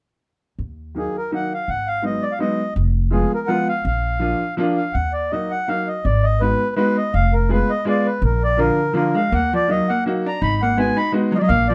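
A dark, growly upright bass opens this bittersweet musette waltz at 0.6 s, its pizzicato steel strings thumpy and woody, and an up-front upright piano follows with clear, slightly detuned chords and an open, woody tone. The mellow accordion soon takes the melody, reedy and round, close-miked and dry so that its single-reed tone sits full and near. The tune moves at 165 BPM in a swung 3/4, centred on Eb harmonic minor, and the chords circle from Ebm through Abm7 and Fdim to Bb, giving it a nostalgic sway. After the first phrase, a second section begins at 5.0 s, and at 8.6 s a vintage hollow-body electric jazz guitar adds a clean, picked second line with a shadowy tone beneath the accordion. Moderate studio reverb gives the ensemble a modest sense of room in this short extract from a longer piece.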